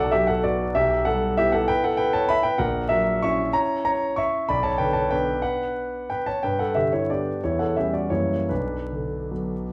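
A large studio's lush reverb and a vinyl crackle frame this recording, which feels heard from further back in the room even as the piano keeps a present, polished quality. It is a short classical piano waltz fragment in 3/4, cut from a longer piece and lasting 9.7 seconds, with an elegant, bittersweet mood. A solo concert grand carries everything, its intimate tone marked by deep bass, long sustain and audible action noise, spanning A#1 to C#6. The rubato phrasing lets the lilting triple metre breathe freely. The harmony moves through minor-key colours, passing a diminished chord and a tense F#7b9 before settling home on Bm at 8.5 seconds.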